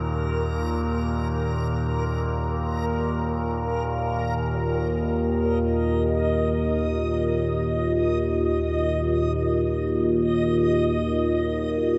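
A huge, cavernous reverb with a long seven-and-a-half-second tail wraps this dark, warm excerpt of an ominous, vast dark ambient drone in free time. Up front, a detuned sawtooth-and-sine drone sits low between Eb2 and Bb2, its resonant overtones moving as chorus and its own reverb thicken it. High above, a reversed, granular texture between Bb4 and Eb5 swells in a dreamy, bright haze, mixed well beneath the drone. At 4.6 seconds a deep, nasal analog pad with a sub octave enters on an Eb minor chord, so faint it is barely audible, shading the sound with moody darkness. With slow and soft attacks and long releases throughout, the sound simply hangs and breathes until the excerpt ends at 12.0 seconds.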